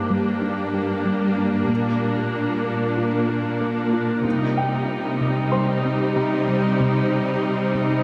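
Vast and brooding, this cinematic fragment at 94 BPM moves from G minor through B-flat to C minor, with lush, vibrato-rich viola and cello sections bowing up front over an ethereal pad thickened by ensemble chorus, while a very quiet, round synth pluck arpeggiates, and a boxy grand piano with audible action noise and tape echo sits far back, all bathed in a scoring-stage reverb with lossy compression artefacts.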